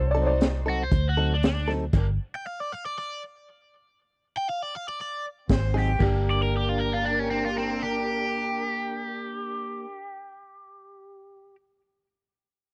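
Crunchy breakbeat drums at 118 BPM, gritty and saturated with dark cymbals, anchor this mournful, smoky straight-eighth soul blues in G minor, where a bright, overdriven stack guitar with phaser sings the melody over a round, foam-muted fingered bass, clean direct-recorded guitar stabs, a woody upright piano second line and a distant, lush bowed string section; the band drops away around 1.9 seconds, leaving the lead guitar alone until 5.5 seconds, all in a dry, close 1970s-style studio sound.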